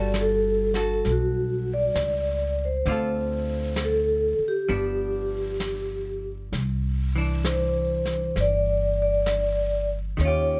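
Late-night and romantic, this slow swung jazz excerpt moves at 66 BPM in G major, drifting through Gmaj9, Dm7 and G7 before settling into C major on a Cadd9 at 6.5 seconds. An up-front vibraphone played with medium mallets carries the melody with a ringing, airy tone and fast motor vibrato, while a dark, clean, compressed hollow-body electric guitar picks the accompaniment beneath it. A woody, growly pizzicato upright bass sits close in the mix, and a brushed drum kit with a medium-tuned snare and hi-hat enters at 0.1 seconds, all captured with close, detailed microphones and little reverb.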